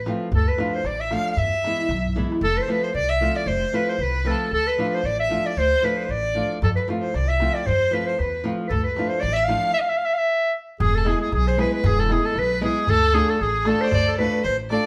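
A soft-attacked, classical-style clarinet leads up front over a focused, distant bowed violin with vibrato and a woody, thumpy pizzicato upright bass from the very start of this bittersweet, fiery Balkan wedding-band excerpt at 115 BPM in 2/4, joined by a small fingerpicked nylon-string guitar and a deep clay-shell darbuka in the background that plays a fill at 2.0 seconds, drops out and returns at 6.6 seconds, all heard in a moderate large-studio reverb as the band plays live in one room.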